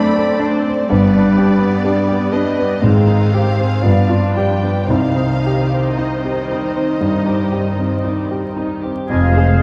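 A clear, up-front baby grand piano carries the melody in this tragic, passionate romantic movement for piano and orchestra in C minor, moving with rubato at roughly 55-62 BPM, while veiled, con sordino violins also carry the melody higher up and a second muted violin section and a smooth clarinet weave secondary lines in the background. Lush muted violas accompany from the start, and dark cellos and double basses and a very quiet horn section fill out the harmony from 0.9 s, as the chords pass from G through Abmaj7 and G7 to C minor. At 9.1 s a vintage-toned oboe, a bright trombone section and a distant trumpet stab arrive on an Fm7 chord, all within a moderate scoring-stage reverb and a dark production flecked with vinyl crackle.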